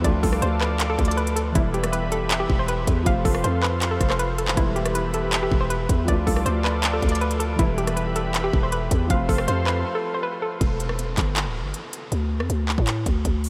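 A growling, buzzy 808-style bass and trap drums with a hard-clipped kick, crisp hi-hat, handclaps and rim click sit up front in this menacing, brooding half-time trap excerpt at 159 BPM in E phrygian, beneath a hollow, nasal square pluck melody with chorus and diffuse ambient delay, smooth vintage grand piano, a warbling analog pad in the background and a very quiet downlifter, all drifting through a dreamy, reverb-soaked space over Dm, Em and F chords until the melodic parts stop at 10.6 seconds, leaving bass, drums and downlifter to carry on to 13.5 seconds.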